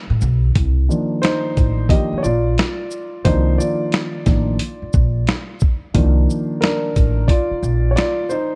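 Nocturnal and cool, this jazz-hop fragment from a longer piece sits at 89 BPM in C dorian with a lazy 16th-note swing, resting on a single Cm11 chord after a brief break. A woody, pizzicato upright bass with steel strings arrives at 0.1 seconds, joined by a gritty, pitched-down boom bap sampler kit with a thumpy kick, medium-tuned snare, hi-hat and shaker, all compressed and tape-warm. From 0.9 seconds a dark, mellow concert grand piano takes the lead, intimate and vintage in tone with deep lows and audible action noise, with all three parts up front in a dark studio reverb.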